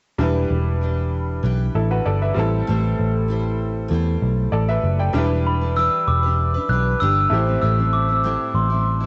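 Opening at 0.2 s, a woody, slightly detuned upright piano with audible action noise and a full-bodied dreadnought acoustic guitar, touched with subtle chorus and vibrato, move between Em7 and Am7 over a round, punchy, foam-muted electric bass sitting up front, and at 5.5 s a soft, bell-like glockenspiel played with rubber mallets joins them to carry the melody through tape echo, giving this lonely, mellow indie pop excerpt in E minor at 97 BPM the rolled-off top and light reverb of a home cassette recording.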